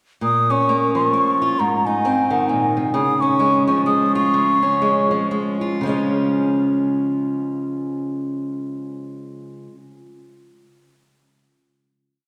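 A wet church reverb surrounds this short acoustic folk piece, giving it a spacious, hall-like sound. The mood is nostalgic and peaceful, in a gently swung three-beat metre. Up front, a fingerpicked steel-string acoustic guitar plays rolling arpeggios with bright, fresh-stringed tone and an audible finger squeak, moving through Bbm, Ab and Db. Above it, a mellow bansuri carries the melody with an airy bamboo breath, soft attacks and vibrato, shaping motif-based call phrases before it stops at 5.3 seconds. The music slows from 2.9 seconds as it settles onto its final chord, and the guitar rings on alone until 9.7 seconds.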